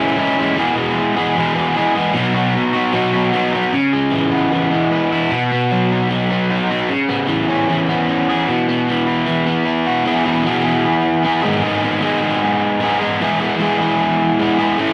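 Rock excerpt at 152 BPM in E major, where a bright, crunchy overdriven electric guitar, picked and double-tracked up front, plays alone in a jangly, upbeat mood through chords moving from C#m and E to B, C#m7 and Bsus4, then settling on E and G#m, all bathed in wet studio reverb over vinyl crackle.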